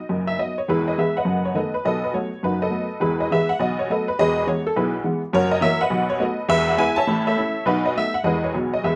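Close, detailed microphones and light reverb place a detuned, jangly honky-tonk upright piano squarely up front in this short fragment of a longer stride jazz piece. The piano plays alone at a brisk 206 BPM in 4/4 with a swung eighth-note feel, spanning E1 to A5 in E major and tuned to A4 = 438 Hz. Its playful, swinging phrase moves through E, B7, F#7 and A before returning to E and landing on B at 8.5 seconds.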